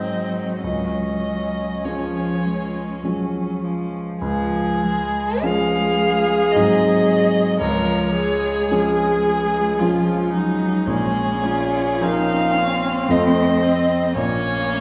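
Heard from further back in a recital hall with a wet reverb, this serene slow romantic movement for piano quartet in Db major unfolds in a rubato 3/4 at 48-57 BPM, where a rich, focused violin with vibrato sings the melody up front over a smooth, close cello second line, while a clear, even viola and an intimate concert grand with audible action noise, deep bass and long sustain fill out the accompaniment as the harmony moves from Ab7 and Db toward Bbm7, F7 and Bbm in this passage cut from a longer piece.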